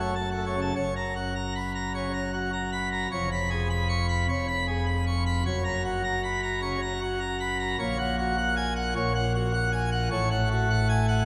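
Classical organ toccata in F# major at 102 BPM in a straight 4/4, tuned to A4 = 441 Hz, this majestic, stormy excerpt gives a solo pipe organ on full plenum with brilliant mixtures, baroque voicing and audible chiff, placed up front and ranging from E#1 to C#6 across all 11.2 seconds, moving from F#m through F#, C#7/E# and F#/A# to F#m/A inside a wet scoring-stage reverb with a 2.0-second decay.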